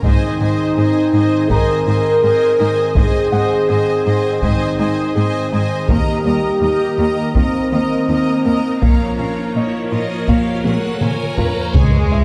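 Hybrid orchestral and electronic film score in Bb minor at 82 BPM, this relentless, futuristic excerpt is cut from a longer piece and carries a dark production on a moderate scoring stage. From the start, a mellow French horn section and a smooth, detuned sawtooth analog pad with chorus hold sustained chords over a clear studio cello section bass line, while a taiko ensemble pounds with heavy sticks in a live room. Clear, lush violin and viola sections play a second line and accompaniment with vibrato, as a very quiet woody, wave-folded pluck runs arpeggios and a felt-muted upright piano adds soft, intimate texture with audible action noise. The harmony moves from Ab to Eb and settles on Bb minor at 8.8 seconds, as an electronic riser builds from 8.7 seconds and the drums fill toward the end. At 11.7 seconds an impact lands with a sub drop, a deep, punchy sub bass and a very quiet, rich double bass section on Db2, while a bright violin section touches a single Ab5 in the background.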